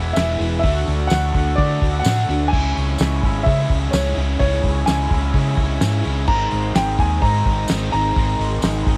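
Carefree and upbeat, this short indie rock clip in a straight 4/4 feel opens on E before moving through Dadd9, C#m and G#add9. A woody upright piano carries the melody over buzzy, vintage combo organ chords and a crunchy overdriven guitar riff, both set in the background with lush chorus. A bright, raw garage guitar plays a riff through overdrive and phaser, while a round, hollow-body short-scale bass sits up front. From 0.2 seconds a cloth-damped, thuddy drum kit with dark cymbals, fat snare and tight kick enters together with a jingly, close tambourine, and the dry home recording on cassette gives the piano, organ, guitars and drums a tape grain.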